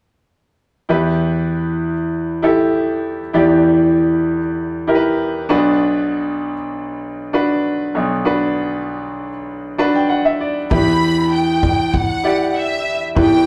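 A straight 4/4 pulse at 98 BPM carries this dramatic, driving piano-driven pop in E minor, cut from a longer piece. A bright grand piano with brilliant, open tone and short sustain sits up front as the accompaniment from 0.9 seconds, moving from Em to Bm and playing a fill just before the change at 10.7 seconds. At that point the harmony returns to Em as a lush symphonic violin section, bowed with vibrato and a smooth, focused top, takes the melody up front in a high register. A punchy, distant acoustic kick drum enters alongside the strings, its roomy character adding weight beneath them. The whole take has the rough feel of a rehearsal-room recording, wrapped in a wet small-room reverb.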